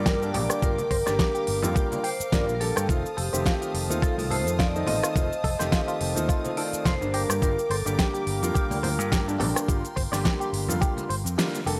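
A lightly swung 106 BPM groove in 4/4 drives this feel-good nu-disco cut, with a thumpy, up-front electronic kick layered under a pop drum kit of fat snare, crisp hi-hat, rim click and cabasa, while bright hand-struck congas sit in the background and a punchy fingered electric bass anchors the Gm7 and F7 changes. Over a dark, mellow baby grand piano and soft-attack, sul tasto strings that pump with sidechain, a ringing, airy vibraphone carries the melody through tape echo, and a twangy, clean direct-recorded guitar picks a chorused riff further back. The mix has a dry, gritty hardware character with transformer saturation and light studio reverb, and the kick drops out at 11.4 seconds for a final band accent.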